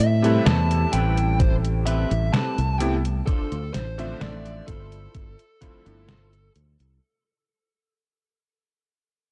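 Vaporwave at a slow 64 BPM, melancholic and hazy, heard as a fading fragment of a longer piece that moves from Am9 to Dm7 to G13sus4 under dark, dry production. A distorted fuzz lead guitar carries the melody through tape echo, while a round, punchy fingered electric bass with tube saturation sits up front beside a detuned 8-bit drum machine's hi-hat and snare, joined at 1.4 s by a thumpy electronic kick. A clangy, chorused electric grand piano with vintage 12-bit sampler grit and long sustain fills out the accompaniment, and a clean, picked electric guitar plays a riff through analog chorus and delay.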